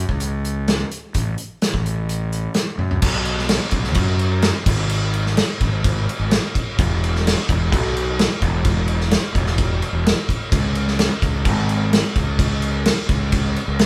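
Math rock meets midwest emo in this wistful, intricate excerpt from a longer piece, moving at 128 BPM in a straight 4/4. A fuzz-laden fingered electric bass carries the low end from the very start, its overdriven tone growly and up front as it ranges from E1 to F#2. A loose indie drum kit joins at 0.1 seconds, sounding acoustic and roomy with dark cymbals, a medium-tuned snare and a punchy kick, using crash, hi-hat, kick, snare and toms. After a drum fill at 2.8 seconds, the music shifts into a new section at 3.0 seconds that runs to the close. The pair sounds like a band playing live in one room, with light reverb lending a sense of shared space.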